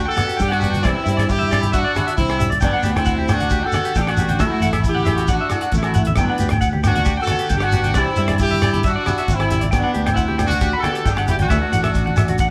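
A bright horn section carries the melody from the very start of this carefree, joyful highlife guitar band excerpt, sitting up front with a tight, pop-style sound and light vibrato, while a growly, direct fingered electric bass anchors the low end. Within the first fraction of a second a clean, twangy electric guitar joins with picked arpeggios high above, and a boxy, parlour-style fingerpicked steel-string acoustic guitar adds accompaniment further back. The damped 70s drum kit keeps a straight 4/4 at 135 BPM on hi-hat, kick drum and rim click, its tight kick sounding dry. Behind it, low-tuned congas with a thick-skinned tone, ringing agogo bells and a grainy, mellow shekere fill out the percussion layer in the background. The harmony in G major cycles through Gmaj7, Cadd9 and Dadd9, and the whole band plays live in one room with a moderate stone-room reverb giving the sound a sense of space.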